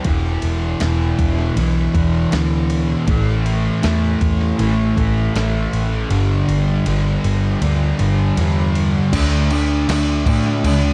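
A thick, double-tracked fuzz guitar sits up front, its dark, distorted picked riff coated in lush chorus and moving through E5, A5, G5 and D5 power chords. This short cut from a longer shoegaze and dream pop piece moves at 79 BPM in a straight 4/4, with a hazy, wistful mood. Underneath, a vintage foam-muted electric bass gives a round, punchy, amped low end, while a clean 12-bit digital drum machine supplies a thumpy kick, fat snare, ride and crash with a sampler-style feel. The kick and snare drop out from 6.1 to 9.1 seconds, and a new section begins on the D5 chord at 9.1 seconds. The production is dark and warm, with little reverb.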